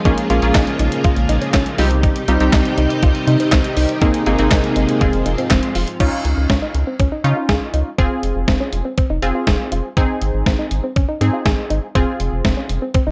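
Synth-pop with a cool, driving mood, this short cut from a longer piece moves at a steady, straight four-beat pulse. An up-front, detuned 8-bit digital drum machine leads the rhythm with a thumpy kick, medium-tuned snare, handclaps, hi-hat and crash cymbal, its sampled sound re-recorded in a large room. Beneath it a rubbery square-wave bass sits dark and bouncy, with a hollow, nasal, resonant edge and a moving notch in its tone. A punchy, bright funky polysynth comp in detuned sawtooth and wave-folded layers runs through the cut with chorus, while a soft, round pluck with short decay adds mellow arpeggios washed in chorus and tape echo. A lush vintage string machine with sub octave and ensemble chorus holds slow-attack chords in the opening section before it stops at 6.0 seconds, as the harmony moves from minor-seventh and add-nine colors back toward F minor. The whole has light reverb and a dry, gritty hardware character with a cassette-tape grain.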